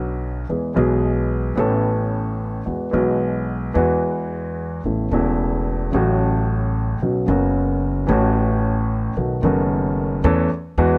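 This short excerpt from a longer tango opens with a warm grand piano and an upright bass sounding together from the very start, setting a playful, elegant mood in A major. The tempo sits around 111 BPM in 4/4, but the feel is rubato, so the pulse breathes rather than marching strictly. Up front in the mix, the piano carries the accompaniment across a low-to-middle register, moving through chords such as Aadd9, Eadd9, F#m/A and Bsus2 before a B7 leads to A/E near 10.3 seconds. Beneath it, the acoustic upright bass is plucked pizzicato on steel strings, giving a woody, thumpy tone with a bright edge. Close, detailed microphones and very little reverb keep both instruments intimate and clear through to the cut at 11.0 seconds.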